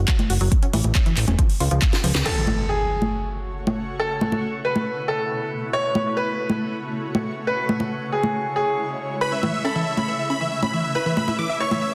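Bittersweet and euphoric, this uplifting trance excerpt opens with a fat, nasal analog bass, a punchy electronic kick, a house kit of cracking snare, metallic hats, congas, handclaps and crash cymbal, and a tight, pumping sequenced synth arpeggio; after a drum fill, an electronic impact lands at 2.3 s as a bright baby grand piano enters with dub echo, before a huge detuned supersaw lead, doubled by a very quiet, lush unison pluck, arrives at 9.2 s in a dense, heavily limited mix.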